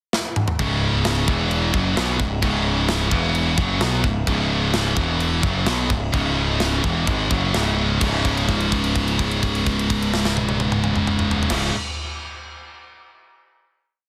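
A dense, heavily limited modern master in a small room ambience frames this short, complete heavy metal piece in C# minor, dark and epic in mood, moving at 128 BPM in a straight 4/4. A tight acoustic drum kit, mid-forward in tone with a medium-tuned snare and a tight, softly clipped kick, opens with a fill over the pickup bar, then drives the groove up front with crash cymbal and toms. At 0.6 seconds two electric guitars enter together on a picked power-chord riff that shifts between C#5 and E5 before settling on C# minor. The scooped, high-gain guitar sits bright and forward, while a sludgy, overdriven second guitar rumbles behind it. A growly, overdriven picked bass doubles the riff in driving eighth notes, and at 8.0 seconds the band lands on a final C#5 chord held until the close.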